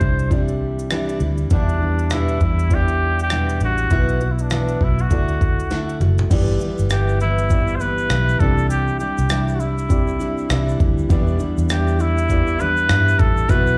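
Acoustic pop with a sunny, carefree mood at 100 BPM and a loose 16th-note swing, led up front by a breathy, whispered trumpet with vibrato over a fingerpicked jumbo steel-string guitar with audible finger squeak and a mellow felt-muted upright piano sitting in the background with its action noise, all three touched with slapback echo. Underneath, a round, foam-muted vintage electric bass and a gritty, pitched-up sampler-style jungle kit with a thumpy kick, rim clicks and shaker drive the groove, capped by a drum fill at 5.7 seconds before a grainy egg shaker joins at 6.3 seconds. The whole piece sounds like a live club gig heard through the venue's PA, cut from a longer performance.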